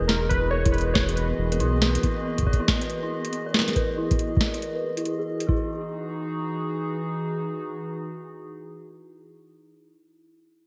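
Bright 1980s-style digital production with a lush hall reverb frames this playful, intricate IDM fragment in E lydian at 139 BPM, swung on the sixteenths over an Emaj9 chord. Nostalgic, detuned lo-fi synth keys carry a brief melody and a round, up-front analog bass anchors the low end, both gone by 2.0 s, while a deep electronic kick and a booming drum machine with crisp snare, metallic hats and gated reverb drive the groove until around 5.5 s. A warbling tape-like pad sustains dark, vintage chords, a grainy granular texture flickers in the background, and an eerie, inharmonic FM bell spins arpeggios through chorus, phaser and a filter sweep, ringing on to 10.7 s.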